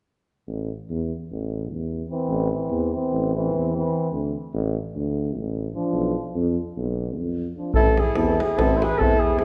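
A wet, reverberant church or concert hall sound surrounds this bittersweet, fiery piece of Balkan brass band folk, cut from a longer performance in a straight 9/8 at 297 BPM counted in eighths, set in A harmonic minor and tuned to A4 = 435 Hz. A warm, up-front tuba opens at 0.5 seconds, carrying the bass line with light vibrato in a classical style. At 2.1 seconds, two euphoniums join as accompaniment: one clear with a gentle vibrato, the other warm and set in the background. The harmony moves from A minor through D5 and B diminished before returning to A minor. At 7.7 seconds, a distant, roomy flugelhorn takes the melody in a classical manner while a deep, acoustic davul with a small-room character enters up front. A breathy alto saxophone with scooped, pop-style notes follows just after, weaving a second line.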